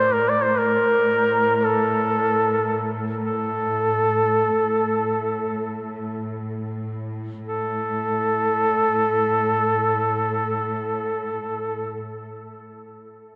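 Solemn and full of longing, this Caucasian folk lament unfolds in free time, cut from a longer piece. A mellow duduk carries the melody as an up-front solo between A4 and D5, its folk-style phrasing shaped by vibrato, scooped notes and a smooth top. Beneath it, a distant bowed string section holds a low drone on A2, with a soft attack, vibrato and expressive portamento lending it a warm, ensemble glow. The pace slows through the opening passage, and a second passage begins at 7.5 seconds. A wet cathedral reverb with a 6.1 s decay places the music in a vast, echoing space, so each duduk phrase lingers and hangs in the air.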